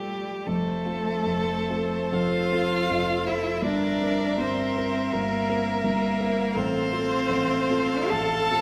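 Set in a wet concert hall reverb, this brief cut from a slow romantic piano-quintet movement unfolds with yearning, melancholic rubato, as a clear, focused solo violin sings the melody with vibrato over a rich, distant cello second line, an intense bowed viola and a dark, mellow concert grand up front whose audible action noise and deep bass lend a vintage intimacy, while a second, smooth-topped violin joins at 0.5 s with its own bowed line.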